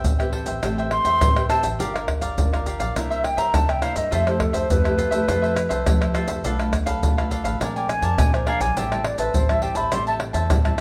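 A straight 4/4 samba groove opens this playful, joyful samba and choro excerpt, built on a tight surdo with maracas, pandeiro and tamborim played with soft hands, sitting close, dry and up front. Over it, a wooden flute carries an airy solo melody with vibrato and a crisp attack, ending at 10.2 seconds while the band plays on to 10.8. A picked cavaquinho and a classical nylon-string guitar, fingerpicked on fresh strings with the odd finger squeak, fill in the accompaniment, and a pizzicato upright bass on steel strings adds a woody, growly low end. The harmony moves from Am9 through Gm7, C9 and Fmaj9 to Bm7b5 and Bb9, before settling on Am7. A wet, large studio reverb lends the ensemble a sense of space, and the passage is cut from a longer piece.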